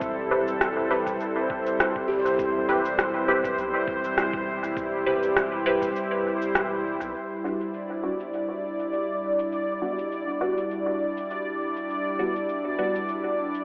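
Ambient dub with a meditative, hazy mood, cut from a longer piece and given a telephone-like tone inside a moderate stage reverb, where an up-front, smooth, detuned analog pad sustains Am7 before moving to Em7 at 7.1 seconds. A woody, buzzing kalimba plays arpeggios with dub echo until 4.4 seconds, while a round, soft sub bass sits in the background and a muffled, thumpy kick drops out at 5.9 seconds before a brief break. Tape-toned electronic shaker and rim click run throughout under low-pass filtering and dub echo, joined by a bright, resonant bubbling filter texture and dark, muted chord stabs with phaser and a moving notch.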